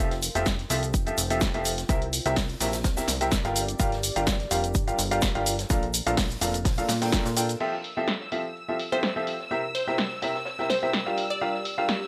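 Feel-good and euphoric, this 126 BPM piano house excerpt in F major swings lightly over Fmaj9, C7 and Gm7 chords: a clear, worn grand piano riff with tape echo and sidechain pumping sits up front alongside a punchy, tape-toned analog drum machine and a layered electronic kick that stops at 7.2 s, while a funky, plucky sawtooth bass pumps beneath until 7.6 s, when a smooth, bowed violin section with vibrato enters on sustained chords; a glassy, crystalline wavetable pluck with chorus adds a brief melody from 8.9 s, all above a very quiet, moody ambient pad and an acoustic jazz kit of hats, shaker and snare in the background, set in a light small-room reverb.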